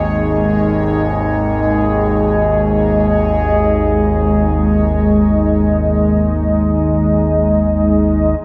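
Floating in free time, this short section of a dark ambient drone feels desolate and cavernous. A deep, moody pad of detuned sawtooth unison with a sine sub octave sits up front, holding sustained chords with slow attacks, long releases, chorus and its own reverb. Beneath it, an evolving, nasal analog drone of sawtooth and pulse waves with pulse-width modulation rumbles low and close, also treated with chorus. A round, horn-like synth lead carries a mellow melody with a soft attack, vibrato, a filter sweep, chorus and a diffuse ambient delay before it falls away at 7.2 seconds. Far in the background, a bright, resonant texture bubbles through random filter steps and fades out over its 8.4 seconds, all of it bathed in a dreamy, lush hall reverb.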